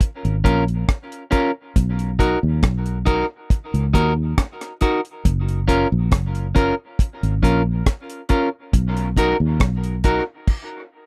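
Dub reggae in F# major at a laid-back 69 BPM, this spacious excerpt moves between F#maj7 and Bmaj7 over a deep, dry drum kit with a tight kick, rim clicks, hi-hat and crash cymbal. A round, dark fingered electric bass sits up front in a low register, while a clean, picked electric guitar adds accompaniment treated with dub echo. The close, 1970s-style studio sound carries light reverb, and everything halts in a stop from 10.5 seconds.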